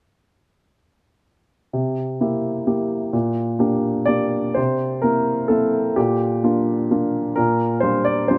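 Neoclassical minimalist piano in 3/4 at 128 BPM, played with a rubato feel that gives this short excerpt from a longer piece a melancholic, intimate mood. A lone upright piano carries everything, entering at 1.7 seconds and sounding until 8.4 seconds, ranging from Bb2 up to D5. Its tone is woody and polished, placed up front and present in the sound. The harmony moves between C7 and Bb6 twice before settling on Gm7/Bb near the close, with a second section beginning at 4.6 seconds. A light reverb surrounds the instrument, keeping the close, private character intact.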